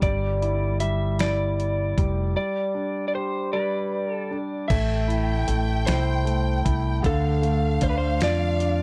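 This tender, romantic six-eight pop ballad opens at a slow 51 BPM with a slightly broken-up electric slide guitar carrying the melody over an intimate grand piano with audible action noise. Beneath them, a bright, up-front fretless bass with analog chorus and a gritty sampler-style soul kit with a thumpy kick and fat snare hold the groove, with a break at 2.4 seconds. At 4.7 seconds a lush, distant violin section with vibrato and tape echo joins as the Em7–G progression moves to Am and Dm, all captured in a dry, close 1970s-style studio sound in this excerpt from a longer piece.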